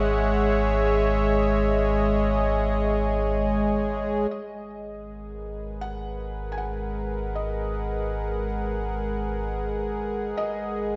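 A wet concert-hall reverb with a 2.3-second decay surrounds this ambient excerpt, and its highs are rolled off for a hazy finish. From the start, a detuned sawtooth analog pad sits up front, holding smooth, slow-attack chords through a chorus effect. Beneath it, a round sine sub bass sustains a deep G#1 with a mellow weight. At 4.3 seconds a felt-muted upright piano enters with a muted, intimate melody in a narrow upper register, its notes trailed by delay. From that point the pad, bass and piano all fade in together, while the harmony moves from C#madd9 over G# to G#m9 and settles on a rootless C#sus2 over G# at 10.4 seconds, keeping the mood reflective and serene.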